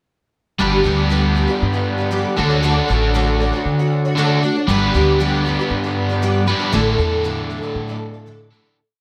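A straight 4/4 pulse at 117 BPM drives this short, hopeful rock piece, a single pre-chorus where a woody, thumpy pizzicato upright bass plays a dotted figure beneath a shimmering, octave-doubled twelve-string acoustic guitar strumming sixteenths in open chord shapes through ensemble chorus and plate reverb, while a bright, double-tracked overdriven electric guitar sits up front with ringing chords over G, Dmaj7, G and Asus4 before a fade-out from 6.7 seconds.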